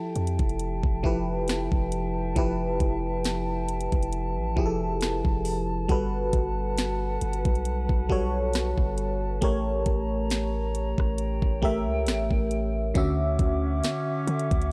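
Contemporary R&B with a romantic, tender mood and a lightly swung 16th-note feel, cut from a longer piece. A glassy, bell-like FM electric piano with chorus sits up front over airy, mellow flute chords with vibrato, while a deep, sine-toned 808-style bass and an electronic drum kit (knocking kick, sharp snare, metallic hi-hats and rim click) join at 0.2 seconds. The chords move from Fmaj9 through Gmaj9 and A7b9 to Dmaj9 at 13.0 seconds, and the dry, gritty sound carries transformer saturation and cassette tape character.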